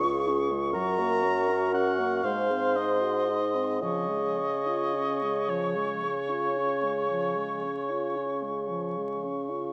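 The oboe sits up front with a warm, lightly vibrant voice, carrying a second line between Db5 and Db6 until it drops out at 8.7 s. This is a tender, slow romantic movement for wind quintet in Db major, moving in a rubato 12/8 at about 36-44 BPM in dotted quarters, and cut from a longer piece. The pure, hollow concert flute sings the melody high around C6 to Db6 with vibrato and tongued notes. The bassoon anchors the bass with a dark, soft-attacked tone that feels at once prominent and roomy, while a shadowy clarinet and a mellow French horn with light vibrato fill in the accompaniment, the clarinet tucked into the background. The harmony rests on Db, moves through Gb and Ab7, and settles back on Db, all within a single section set in a reverberant recital hall with a touch of vinyl crackle.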